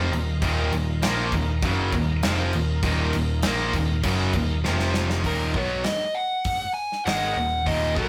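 A straight, driving 4/4 pulse anchors this aggressive hard rock clip, cut from a longer piece, with a gated 80s drum kit of punchy kick, medium-tuned snare, hi-hat and bright crash cymbals ringing in an airy, polished big room. Two picked electric guitars, one overdriven and one tight and distorted, share the riff while a growly, overdriven picked bass sits up front and grinds beneath them. Underneath, a very quiet, gritty tonewheel organ holds thick sustained chords through a slow rotary speaker with chorus vibrato until 5.2 seconds. A drum fill from 4.6 seconds leads into the second section at 5.3 seconds, where a dark, smooth overdriven lead guitar steps up front with the melody. The whole take has the rough feel of a rehearsal room, with saturation and light reverb adding heat to the mix.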